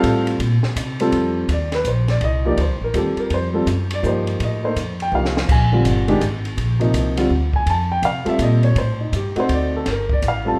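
A warm baby grand piano carries the melody up front in this swinging, playful jazz piano trio excerpt, set in a lilting triple metre with a swing feel. Pizzicato upright bass with steel strings sits just as close, giving a woody low foundation beneath the piano. A compact cocktail drum kit plays further back, dark and smooth with a rolled-off top, a high-tuned snare and a punchy kick, using crash, ride and hi-hat, and adding a short fill at 5.1 seconds. The harmony moves from F7 to Bb7 and back to F before a turnaround through Am7b5, D7b9 and Gm7. The drums drop out at 10.3 seconds, and a moderate large-studio reverb lends the trio an open, natural room sound.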